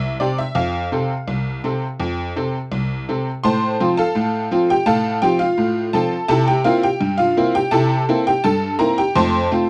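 Set in a dark production with light reverb, this lively, playful ragtime piano fragment in 2/4 features a solo tack piano, jangly and metallic up front, moving through its opening phrase into a second strain at 3.4 seconds that settles back on F by 9.2 seconds.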